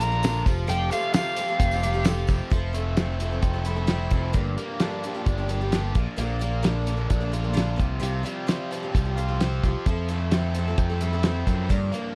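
An up-front overdriven slide guitar opens this dusty, wistful folk and heartland rock excerpt with a brief solo that ends at 2.0 seconds, over a shimmering, octave-doubled twelve-string acoustic guitar, a biting, double-tracked overdriven guitar riff, a warm picked electric bass, a damped 70s drum kit with a fat snare and tight kick, and a jingly tambourine in the background until 2.5 seconds, all in a dark production with light reverb as the chords move from Fmaj7 through Gm7, Bb and Csus4.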